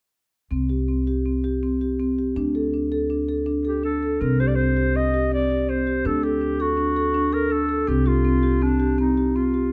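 A straight 5/4 pulse at 163 BPM drives this short cut from a longer piece of contemporary chamber music in C dorian, its mood pensive and restless. A marimba played with soft mallets opens at 0.5 s with round, mellow arpeggios. A pizzicato upright bass enters at the same moment, its gut strings giving a woody, thumpy low line. At 3.7 s a breathy clarinet takes the melody as a solo, and its soft attack, light vibrato and scooped notes lend a whispered, intimate, jazz-style voice with a vintage tinge. The harmony moves among C5, D5, D and Cm, and a new section begins around 4.2 s. All three instruments sit up front under light reverb, captured by close, detailed microphones.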